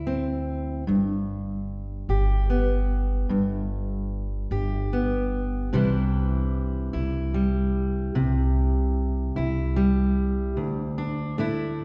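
A fingerpicked steel-string acoustic guitar with a dark tone and a woody pizzicato upright bass open this nostalgic, peaceful folk fragment together, moving slowly at 50 BPM in a straight 6/8 over Cadd9/D, G and Cadd9. Both instruments sit up front in a church-like hall whose long, wet reverb adds a spacious glow. The bass stops at 10.5 seconds, leaving the guitar to carry a brief closing turn onto Dsus2 until the cut at 11.8 seconds.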